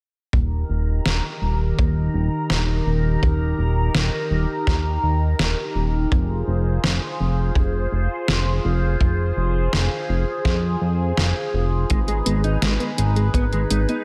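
A fat, thick sawtooth bass with a filter sweep anchors this uplifting, romantic synthwave excerpt at 83 BPM in Eb major, underpinned by a tight, roomy kick drum and a detuned, sampler-style 8-bit drum machine whose hi-hat and snare carry gated reverb, while a swirling, nasal phased pad holds chords moving from Eb to Fm to Abm, and at 11.9 s a soft, round pluck arpeggio with cassette tape and delay joins a dark, clean, fingered electric guitar riff.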